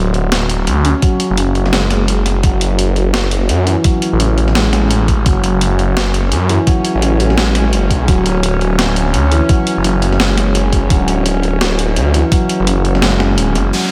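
Soaked in cathedral-like reverb, this dreamy, spacious and tense half-time drum and bass excerpt pairs a soft, felt-muted upright piano playing dark arpeggios with an up-front, swirling detuned saw bass, gritty sampler-style boom bap drums featuring hi-hat and a high-tuned snare, and a thumpy electronic kick that briefly drops out at 1.7 seconds, while an eerie, metallic drone creeps into the background from 3.7 seconds and an electronic downlifter closes the excerpt at 13.7 seconds.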